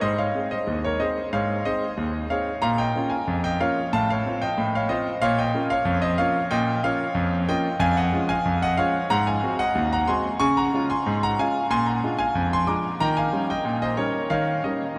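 Ragtime piano in 2/4 at 92 BPM, this jaunty, playful excerpt is cut from a longer piece and settles into Db major from 7.8 seconds. A clear concert grand plays solo for the full 15 seconds, ranging from Eb2 to D6, with a deep bass, long sustain and audible action noise that keeps it intimate and up front. The straight feel moves through a chord sequence beginning on Ab, passing through Bbm and F/A, then landing on Db/F and Ab7 before Bb7 and Eb7 close the passage. A diffuse ambient delay trails the piano's polished tone. The whole mix is soaked in a huge, dreamy reverb with a 7.6-second decay, so the clear, present instrument seems to float in a vast, wet space.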